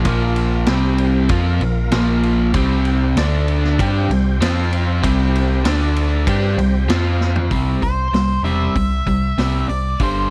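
A dry, close 1970s-style studio sound frames this brooding, swaggering classic rock snippet, where a bright, scooped, double-tracked overdriven electric guitar riff and a round, punchy overdriven picked electric bass sit up front over a gritty, saturated vintage drum kit with dark cymbals. Meanwhile, a full tonewheel organ with slow rotary speaker and chorus vibrato holds sustained chords in the background until 7.5 s, as a drum fill closes, and a dark octave-fuzz lead guitar with tape echo then takes up a short melody at 7.8 s.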